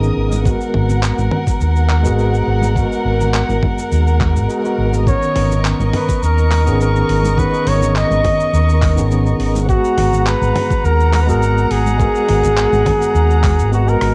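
A straight 4/4 groove at 104 BPM drives this smooth, wistful sunset chillout excerpt in G# minor. A knocking electronic kick with tape coloring enters at 0.5 s beneath a gritty, compressed sampler-style kit of handclaps, hi-hat, rim click, shaker and toms, while very quiet congas add a ringing, close touch of soft hands. A round, amped fingered electric bass sits up front, and a clean tine electric piano carries the G#m9 and Bmaj9/G# harmony through a low-pass filter sweep and tape echo. Above it, a chamber string section holds sustained chords in an intimate, sul tasto voice with light vibrato and a soft bowed attack. At 5.1 s a warm solo flugelhorn takes the melody in a pop style, with scooped notes, a smooth top and analog delay. The whole excerpt has the feel of a home cassette recording, set in a moderate studio reverb.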